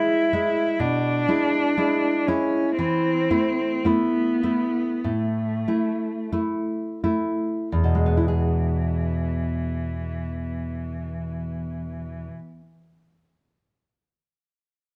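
In a loose, rubato 4/4 that drifts between 40 and 65 BPM, this tender romantic duo for cello and classical guitar in E major slows through its opening phrase before settling into a second passage at 7.7 s. A single bowed cello carries the melody from E3 to E4, its tone rich, smooth and even, with vibrato. Beneath it, a fingerpicked nylon-string guitar supplies full-bodied accompaniment reaching from E2 to G#4, deep in the classical manner. The harmony moves from E7 to Am/E at 2.8 s and resolves to E, with the cello closing at 12.3 s just ahead of the guitar. Both instruments sit up front under close, detailed microphones and light reverb, in what is clearly an excerpt from a longer piece.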